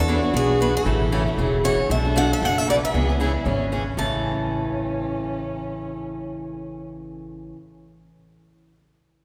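Playful and lively, this short cut of acoustic string swing features several parts, each set in a resonant church acoustic with a long reverb tail: a bright, boxy picked guitar carrying the melody up front, a steel-string parlour guitar's picked accompaniment with audible finger squeak, a woody, thumpy gut-string upright bass plucked close by, and a warm, expressive bowed violin second line with vibrato and portamento that drops out at 6.8 seconds.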